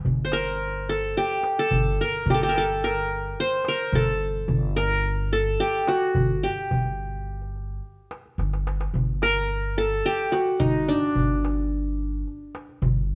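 Melancholic and soulful, this short cut from a longer Arabic maqam ensemble piece moves at 108 BPM in a straight 4/4, set in G maqam nahawand. The qanun carries the melody between D4 and C5, its plectrum-plucked triple strings sounding bright-edged and up front, standing a little above the rest of the group. Beneath it, the pizzicato upright bass holds down a low G1 with a woody, steel-strung tone, also placed up front. A metal-shelled darbuka sits close, giving a crisp percussive pulse and playing a drum fill from 8.4 to 8.9 seconds before the opening passage returns at 8.9 seconds. The trio plays live together in one room, surrounded by a moderate stone-room reverb that lends the performance a natural, resonant space.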